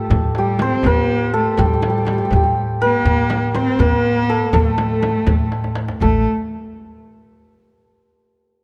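A shimmering, hammered santur carries the melody up front in this short, melancholic and soulful cut from a longer Persian modal piece in A dastgah shur. It moves at 81 BPM in a straight 6/8, counted in dotted quarters. Beside it, a single bowed cello plays a second line with vibrato and a rich, nasal, boxy tone that sits close to the listener. Below them, an upright bass is plucked with a woody yet bright steel-string sound. A tight, compressed tombak played with soft hands stays in the background, while a deep, dry frame drum sits very quiet underneath. Close, detailed microphones and light reverb frame the ensemble, and a drum fill from 5.5 s leads into a new section at 6.0 s.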